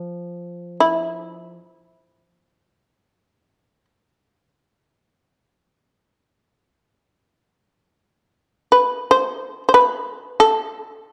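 Japanese traditional chamber music, calm and austere, cut from a longer piece. A buzzing, percussive shamisen carries the plectrum-plucked, fretless melody up front between E4 and C5, joined at the start by a much quieter, dry and woody koto playing a low F3 accompaniment that stops at 1.5 seconds. The shamisen falls silent at 3.8 seconds and returns at 8.7 seconds, all set in a moderate recital-hall reverb within a dark, warm production.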